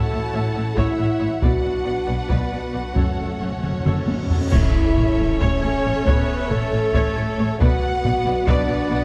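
Heavy-stick taiko drums, close and dry, drive this epic, relentless cinematic orchestral excerpt in 7/8 at 274 BPM (eighths), where lush bowed violins, violas, cellos, double basses and a close string section carry melody, second line, accompaniment and bass under dark, distant French horn chords, with clash cymbals, concert bass drum and a timpani fill from 3.0 seconds leading into a huge cymbal swell and impact, an airy wooden flute entering at 4.5 seconds, and harmony moving from F#m7/A through Bm and F#m to A and back to Bm in a dark, roomy hall.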